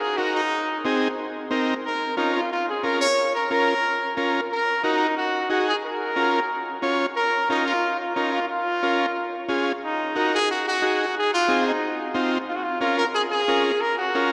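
A clear, pop-style trumpet with light vibrato carries the melody up front in this fiery, driving Latin excerpt at 180 BPM in Bb minor, while a vintage, buzzy combo organ enters at 0.2 s to supply accompaniment over chords moving among Ebm, Ab and Bbm, and the whole passage rings through a vast, echoing cathedral-like space with a long reverb.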